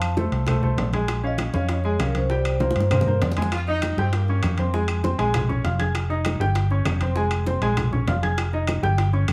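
A dark, round fingered electric bass drives this fast, danceable salsa excerpt in F minor at 197 BPM, joined by a bright, worn baby grand piano with audible action noise, a mellow soft-mallet vibraphone melody that stops at 3.2 seconds, a drum fill from 2.6 to 3.5 seconds, a distant saxophone section with light vibrato from 3.5 to 4.7 seconds, background congas, low-tuned bongos and woody claves, plus ringing metal-shell timbales, all in a moderate studio reverb.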